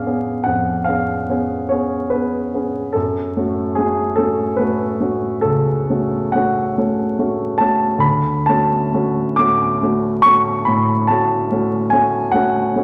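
A polished, up-front baby grand piano carries this short, mournful and wistful romantic nocturne in F# minor, moving in a slow, rubato 12/8 at around 42-50 BPM through C#7/E#, F#m and Dmaj7 chords from C#2 to D6, set in a lush concert-hall reverb with a layer of vinyl crackle.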